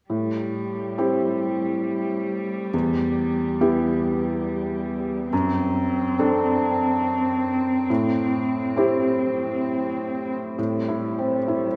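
A rubato 3/4 sway at 69 BPM carries this fragile, longing neoclassical fragment in A dorian, where a soft, intimate felt-muted upright piano accompanies throughout while a rich, bowed cello with vibrato sings a second line, both bathed in the long cathedral reverb of a church or concert hall as the harmony moves from Am7 through Em and D7/F# back to Am7.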